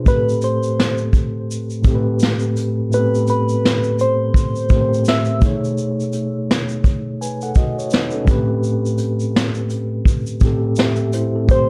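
Nostalgic and melancholic, this short lo-fi hip hop cut moves at 84 BPM in A minor with a swung 16th-note feel, drifting from Am9 to B13 and back to Am9. A mellow tine electric piano carries the accompaniment from the start, its clean tone softened by cassette tape and a low-pass filter, while an up-front vintage brush drum kit, natural and rolled-off on top with a tight kick, keeps hi-hat, shaker and snare moving throughout. A round, gently detuned synth lead with a keys-like fast attack, a decaying tone and chorus sings the melody until 5.4 seconds, returning briefly at 11.5 seconds, all set in light reverb with a hazy tape character.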